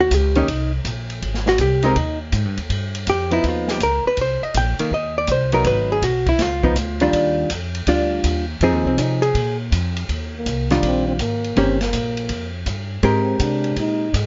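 A clean, compressed hollow-body electric guitar sits up front, comping through jazzy changes in Eb major as this playful small-group swing and bop fragment moves at 162 BPM with a swing feel. A woody, growly pizzicato upright bass and a small-room acoustic kit with dark cymbals and a boomy kick support it. At 10.4 seconds a breathy, whispered trombone enters with an intimate, vibrato-tinged solo line, all captured in a dry, rough home-demo mix with a dull top end.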